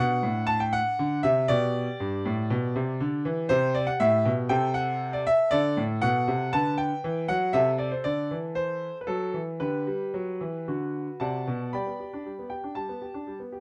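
A clear baby grand piano carries this short, cheerful excerpt alone, sitting up front with an open tone and long sustain that lets its notes ring across a range from G2 up to B5. The music is a classical-period sonatina in G major, moving at 118 BPM in 4/4 with a flexible, rubato feel that gives its elegant phrasing a gently breathing pulse. Its harmony opens on D7 before settling onto G at 1.5 seconds, then travels through C, Am/C, D and Bm/D, returning through G/D and D toward a cadence. A new section begins at 11.7 seconds, landing back on G as the fragment, cut from a longer piece, draws to its close at 13.6 seconds. The production is dark and warm, with a light reverb that softly surrounds the piano's clear attack.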